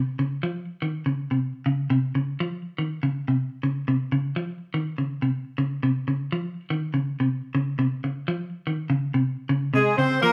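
Intense and driving, this afrobeat fragment from a longer piece moves at 122 BPM in 4/4 with a light sixteenth-note swing over a Dbmaj9 chord, as an up-front, clean, picked electric guitar plays low arpeggios from the start and is joined at 9.7 seconds by a tight, warm horn section with light vibrato, a smooth top and octave doubling that steps forward with a pop-style melody, all captured as a band playing live in one room with moderate studio reverb.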